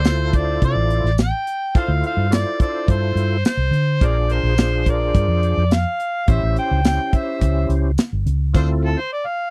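Soulful and mournful, this straight-eighth soul blues excerpt in D minor at 106 BPM sets a mellow, overdriven harmonica melody with scooped notes up front over a dark, foam-muted fingered electric bass, a tight funk drum kit with tambourine, a percussive tonewheel organ through slow rotary speaker and chorus vibrato, and bright sustained horn chords in the background, moving from Dm7 through Bb7 and a rootless A7#9 in a dry, close 1970s-style studio sound.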